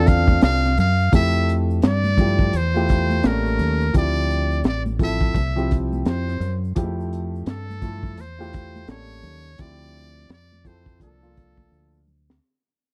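Jazz-hop excerpt with a relaxed, smooth swing, where a buzzy, breathy metal-muted trumpet carries the melody with light vibrato and scooped notes over a mellow, long-sustaining grand piano, a round, up-front dub-style fingered bass, a gritty, saturated breakbeat kit with tight kick and high-tuned snare, and very quiet soft-handed shaker and congas, all moving through lush ninth and eleventh chords in a dry, close 1970s-style studio sound that fades throughout, with a drum fill arriving at 11.7 seconds.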